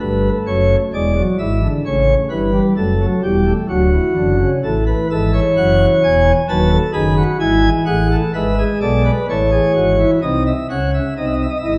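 In a straight, unhurried triple metre, this baroque-style four-part fugue for solo pipe organ moves with a stately yet lively bearing, tuned to A4 = 438 Hz. The organ speaks through sparkling flute stops in a light, bright, romantic voicing, sitting up front and reaching from the deep D1 to B5 at the top. A reverberant stone room surrounds it, and the production as a whole leans dark and warm. The harmony opens on a rootless D and passes through E7, A, D, A, a B7 over D# and an E over G#. It then settles on A around 9.3 seconds before a fresh passage begins at 10.2 seconds on a G#7 over B#. The fragment is cut from a longer piece and breaks off at 11.8 seconds.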